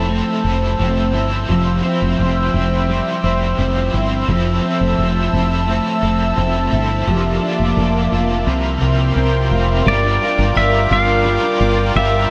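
A bright, twangy pedal steel guitar with fingerpicked slide lines and delay carries the melody from 9.9 s in this blissful, floating dream pop excerpt at 86 BPM in F major, above a growly, round fretless bass up front with lush chorus, slightly broken-up picked arpeggios on a compressed electric guitar with chorus and delay, an overdriven, tremolo-washed stack guitar in accompaniment, a thick, detuned sawtooth pad of slow-attack sustained chords, and a very quiet, metallic hard-mallet vibraphone ringing with fast motor vibrato, heard briefly at the very start and again from 7.1 s, all moving through Fmaj7, C/F, Bbmaj7/F and C7sus4 to Gm7 in a moderate plate reverb.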